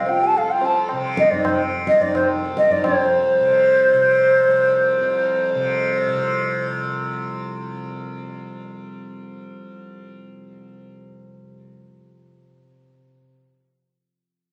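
A light reverb and the roomy sound of a phone recording frame this short fragment of Hindustani classical music, cut from a longer piece. It moves at 109 BPM in a straight 7/4, with an introspective, longing mood. The hollow bansuri carries the melody up front between C5 and A5, its bamboo tone pure and tongued with vibrato, and it stops at 6.7 seconds. Beneath it, a reedy, breathing pedal harmonium plays a mellow second line, while high-tuned, ringing tabla add percussion until both fall away at 3.0 seconds. A bright, buzzing tanpura drone shimmers low from C2 to C3 and sounds on alone until 13.2 seconds.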